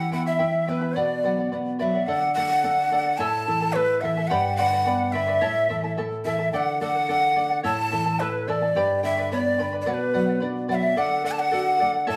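Captured as a live ensemble in one room and bathed in a wet, large studio reverb, this short cut from a longer Andean folk piece in 2/4 feels earthy and festive. Up front, a breathy, bright quena carries the tongued melody with vibrato and a slightly unsteady tone, while an airy pan flute with a crisp attack traces a second line in the background. Beneath them a shimmering fingerpicked charango, its double strings partly octave-doubled, joins a full-bodied nylon-string guitar whose deep classical tone and finger squeak anchor a progression moving from Em and Bm through D, A and G.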